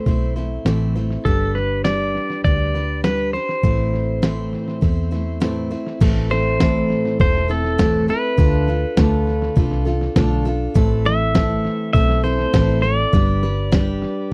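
Honky-tonk and classic country in A minor at 101 BPM, this brooding, dusty fragment sets a bright, twangy pedal steel melody with volume swells and slide up front over a full-bodied picked dreadnought acoustic, a dark, round foam-muted electric bass and a muffled, pitched-down sampler-style drum kit with a thumpy kick, all in a dry, close 1970s-style studio sound as the chords move from Am through G and Dm.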